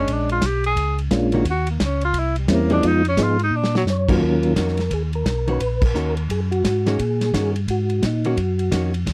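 Soul jazz organ trio in E-flat minor at a swinging 174 BPM, soulful and late-night in mood, with a dry, close 1970s-style studio sound and light reverb, cut from a longer piece. A breathy, whispered tenor saxophone with vibrato and scooped notes carries the melody up front through the opening bars, over a dark, clean hollow-body guitar, a round, lightly overdriven tonewheel organ bass with chorus vibrato and a slow rotary speaker, and a small-room drum kit with dark cymbals and a tight kick that plays a fill. From 1.1 seconds a second tonewheel organ joins the melody with a soft, flute-like percussive tone, chorus vibrato, slow rotary and slapback echo; a new section begins at 4.2 seconds, and the band hits an accent at 5.8 seconds.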